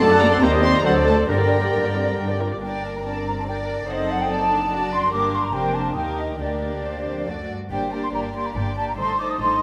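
A bright, airy flute ensemble rides above a softly bowed violin melody set in the background and a second intimate violin line in this lively, graceful classical-period symphony movement in G minor, quick and rubato in 3/4 at 133-148 BPM, where a clear oboe, mellow clarinet, distant bassoon and very quiet French horn chords color the opening bars over dark violas, woody cellos and double basses, a hard-mallet timpani enters briefly at 1.3 seconds, and moderate concert hall reverb surrounds the orchestra.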